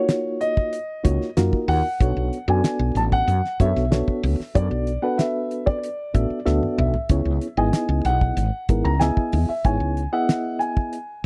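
A dry, close studio sound in the 1970s style frames this short cut from a longer piece of funky, slick electric jazz fusion in a straight 4/4. A dark, mellow baby grand piano carries the melody with a boxy tone and a slapback echo. Beneath it, a reedy, worn electric piano with a fast tremolo plays the accompaniment, slightly out of tune and heard through its built-in speakers. The damped 70s drum kit sits up front on hi-hat, kick, snare and toms, with a fat snare, a tight kick and a rolled-off top, and it plays a fill at 6.5 seconds. A woody fretless bass enters at 1.0 seconds with a round, hollow-body, direct tone as the harmony moves from Ebm9 to Bm9 and then settles on Dbm9 at 7.1 seconds.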